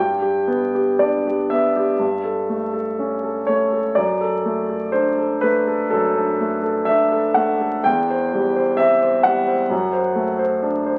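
Heard through the crackle of a very old 78 rpm record, with a moderate large-studio reverb around it, this brief passage from a longer piece is a dreamy, serene romantic nocturne for solo piano, tuned to A4 = 442 Hz. A clear concert grand sits up front, its deep bass and long sustain ringing naturally across a span from E2 to G5. In a slow, rubato 4/4 at 56-66 BPM, the harmony drifts from G through A7/G and D/F# to C/E, reaching D7/F# near 9.7 seconds.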